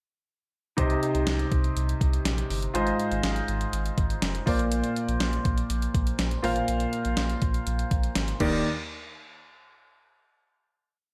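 A dreamy, reverb-soaked mix with a moderate plate and digital ambience gives this short, glossy 1980s-style pop piece its polished sheen. At 122 BPM in a straight 4/4, the full band enters at 0.8 seconds with an uplifting pre-chorus that moves through Cm, Ab6 and Bbadd9 before landing on Ebmaj7. A clean 12-bit digital drum machine sits up front with a sampler-style, thumpy kick, a fat snare and a big backbeat, colored by a tape-like glow and the sound of a small room, along with hi-hat and crash cymbal. Beneath it, a deep, thick, saturated sub bass with a triangle-like tone drives steady eighth notes with a fast attack, adding chromatic approach notes. A present grand piano, also up front and lightly touched by subtle chorus, holds closely voiced chords across its range. The parts stop around 8.6 seconds, and a final hit lingers in the reverb until 10.6 seconds.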